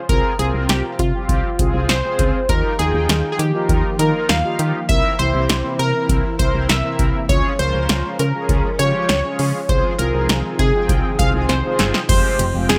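A funky polysynth comp carries the melody up front in this driving, nocturnal synth-pop excerpt, its punchy sawtooth tone marked by a filter sweep and dressed in chorus and digital delay. At 100 BPM in a straight 4/4, an electro analog drum machine sits dry and forward with a deep kick, punchy snare, metallic hats and crash cymbal, while a solid FM bass adds round, dark, quickly decaying notes underneath. Mellow synth brass fills out the accompaniment with a detuned, chorused tone and gentle vibrato. A very quiet string machine enters at 2.5 seconds with silky, slow-blooming sustained chords. The harmony moves through Ab6/C, Ebadd9, C7 and Db before returning to Ab6/C. A drum fill at 11.5 seconds leads to an Fmadd9 at 12.1 seconds, all set in light reverb and digital ambience with a bright 1980s-style digital sheen.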